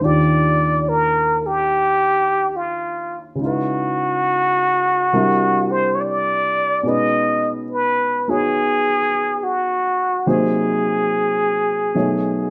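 Swung eighths in a slow 4/4 at 70 BPM carry this smoky, melancholic jazz ballad, tuned to A4 = 437 Hz and cut from a longer piece. A plunger-muted trumpet sings the melody up front throughout, breathy and wah-wah in tone with vibrato, soft attacks and a smooth top. A grand piano with short sustain accompanies close by, moving through Ebmaj9, Dbm9, C9, B6, Cm7b5 and B9, and a moderate large-studio reverb with a dark, warm production wraps the pair.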